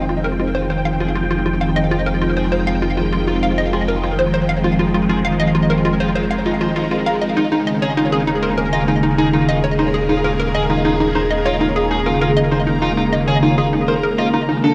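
Swirling, phased string-machine chords sit up front from the first second, joined by a hollow, bouncy square-wave pluck riff with lush chorus and tape echo, a round, deep analog bass, and a slightly broken-up electric guitar whose picked arpeggios fade in under tape echo. This cosmic, mysterious slice of sequencer-driven space music moves at 99 BPM in a straight 4/4, shifting from Fm9 to Eb7sus4 at 7.4 seconds. A resonant, bubbling stepped-filter texture fades in from 2.7 seconds, hanging in the background, while a moderate plate reverb and cassette tape colour the whole cut.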